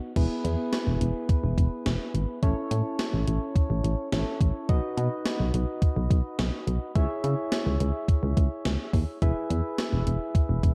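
Synth-pop in E major at 106 BPM with a straight 4/4 feel, this wistful yet bright excerpt is cut from a longer piece and moves through E, A, B and C#m before returning to E at 9.2 seconds. Soft electric-piano-like synth keys open the passage at 0.0 seconds, their gentle, triangle-and-sine tone shaped by a filter pluck with a fast attack, decay and a chorus effect. At 0.2 seconds a gated 80s digital drum machine arrives up front, pairing a thumpy kick with a gated reverb snare, hi-hat and crash cymbal in an electronic, sampler-style sound. A solid FM bass enters at the same moment, punchy and round with a digital, mellow character and a quick, decaying attack, sitting forward alongside the drums. The production is dark with light reverb, leaving the keys softer beneath the bass and drums.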